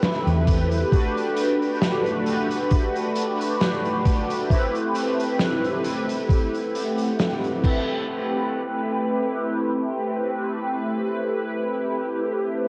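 Worn, warbling cassette tape colours this hazy, woozy vaporwave fragment, a short cut from a longer piece, with light reverb and a drifting pitch that wobbles the whole recording. At a slow 67 BPM in 4/4 with a gentle swing on the sixteenths, it sits in A dorian, moving from Am9 to Gmaj9 and back to Am9. Up front, a mellow synth brass carries the accompaniment: brassy and round, built from detuned sawtooth tones with a filter sweep and vibrato, bathed in phaser, lush chorus and analog delay. Behind it, a nostalgic, lo-fi pad of detuned square, triangle and sine waves with a slow attack and long release holds sustained chords through chorus, phaser and its own reverb, dropping out at 11.4 seconds. An oversized, low-tuned acoustic kit with a fat, gritty snare, hi-hat and crash pumps in a big room, joined from 0.5 seconds by a thumpy, sampler-style electronic kick, both roughened by 12-bit sampler grit and stopping at 7.8 seconds. 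A dark, hollow-body electric bass with tube saturation drops a single round E2 near the very start.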